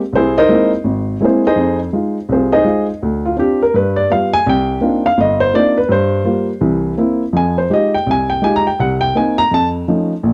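A dry, close studio sound in a 1970s style puts a dark baby grand piano up front, near enough that its action noise is audible beneath the notes. This is a short, swinging jazz passage cut from a longer piece, carrying a late-night mood in 4/4 with a light eighth-note swing. The piano plays entirely alone from 0.1 seconds to 10.3 seconds, ranging from deep bass notes up into its upper register. Its tone is mellow and intimate, with a natural character and short sustain that keeps each chord brief and clear. The harmony moves through altered dominants and rich minor colours, opening on C7alt, passing through Fm9 at 7.3 seconds, and closing on an unresolved Faug7.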